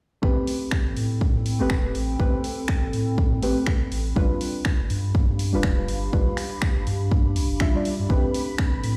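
An overdriven, punchy electronic kick sits up front in this late-night, smooth deep house excerpt, moving at 122 BPM in 4/4 with a 58% swing on the sixteenths in A minor. Behind it, a dry, analog drum machine adds overdriven finger snaps and hi-hat, both drum parts carrying studio reverb. A round, sine-like sub bass with a fast attack holds down the low end and pumps with the sidechain, as do the soft, dark chord stabs, which warble with chorus, a filter sweep and dub echo over chords moving from Am9 to G7 at 4.2 seconds. A nostalgic, lo-fi, tape-like pad with a moving notch and long release drifts in underneath, full-bodied and detuned, with chorus and its own reverb. Near the close, at 8.1 seconds, a silky, bright string pad with ensemble chorus and vibrato appears faintly in the background as the harmony returns to Am9, all set in a large, bare-room ambience.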